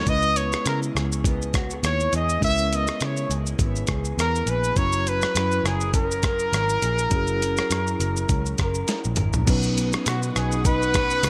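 An up-front trumpet with scooped notes, light vibrato, analog chorus and tape echo carries the melody in this mellow, wistful bedroom-pop excerpt with a gentle swing, over a reedy, slightly out-of-tune electric piano with fast tremolo in the background, a lo-fi, slightly broken-up electric guitar through a small old amp with chorus and vibrato, a dark, round, foam-muted picked bass, and a gritty sampler-style soul drum kit with a thumpy kick, whose fill at 8.9 s leads to a shimmering, warbling string machine at 9.5 s and very quiet crisp handclaps from 10.1 s, all set in light reverb.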